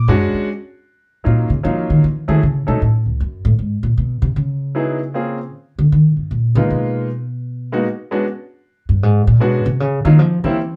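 A swung 4/4 at 154 BPM sets a cool, late-night small-group jazz mood in Eb minor, moving through chords such as Ebm7, Emaj9 and a rootless Gmaj7#11 in this short cut from a longer piece. The upright bass takes a plucked solo from 0.5 seconds, its woody, steel-string tone sitting up front and louder than the piano. Alongside it, a bright upright piano comps with brilliant, polished, long-sustaining chords and audible action noise, all set in a wet studio reverb heard from further back in the room.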